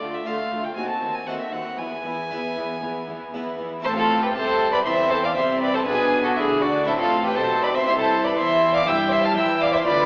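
A solo violin sits up front with a nasal, reedy gut-string tone, carrying the melody from F#4 to A5 in this dramatic, stormy baroque-style concerto movement in A minor, moving at 119 BPM in a straight 4/4. Around it, a chamber violin section also carries the melody higher, reaching up to F6 with light vibrato, while a studio violin section plays a second line beneath. A dark, distant viola section and a cello section fill out the accompaniment and bass in period style. A brilliant, full-sounding harpsichord with three sets of strings sits in the background, and a rich double bass section joins the low end at 3.8 seconds as the music moves from a minor-key opening into a new passage built on Am, Bm6 and C. The strings are bowed with gut-string tone throughout, bathed in a wet reverb that suggests a church or concert hall, though the overall sound has the colour of AM radio, and the roughly 10.1-second clip is cut from a longer piece.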